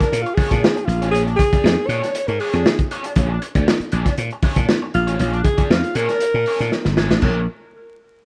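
A crunchy breakbeat kit sits up front in this gritty, strutting funk cut at 118 BPM in Bb mixolydian, its punchy kick, medium-tuned snare, dark cymbals and saturated, rolled-off top driving a straight 4/4 groove before a drum fill at 6.7 seconds. Over a single Bb7#9 chord, a growly, bright slap bass punches alongside, while a breathy alto saxophone carries the melody in an intimate, whispered jazz style, with subtone, vibrato, soft attacks and scooped notes through an analog delay. An overdriven garage guitar picks its accompaniment through wah, and the whole thing has a rough home-demo feel, with studio reverb and vinyl crackle, cut from a longer piece.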